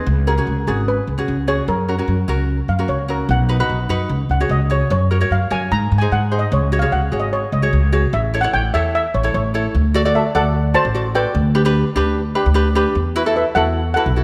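Sunny and bouncy, this calypso excerpt in F# major moves at 149 BPM in a straight 4/4, with a shimmering, metallic lead steel pan struck with hard rubber sticks taking a dark, smooth solo until 9.7 seconds. A bright, light fingerpicked acoustic ukulele sits up front, and a woody pizzicato upright bass on steel strings anchors the low end, all set in a moderate scoring-stage reverb.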